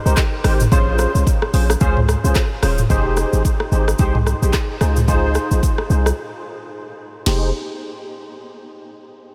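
A smooth, mellow afrobeats groove opens at once with three parts together: an afro-pop drum kit, a deep 808-style bass and a barky, clean tine electric piano that sounds as if it's played through a combo amp. The drums are electronic and produced, with a deep kick, a sharp snare, warm hi-hats, handclaps, rim clicks, shaker, toms and crash cymbal riding a lightly swung sixteenth-note feel. The bass is boomy and sine-like with a noise layer and a fast, decaying attack, sitting up front beneath the piano's chorused, low-passed chords as they move from Abmaj7 and Bbm7 to Fm7 and Dbmaj7. From 2.9 seconds a filter sweep colours the electric piano, and a break arrives at 6.2 seconds before the harmony settles back on Fm7. The whole mix is dreamy and soaked in a huge ambient reverb, giving this short cut from a longer piece a hazy, floating quality.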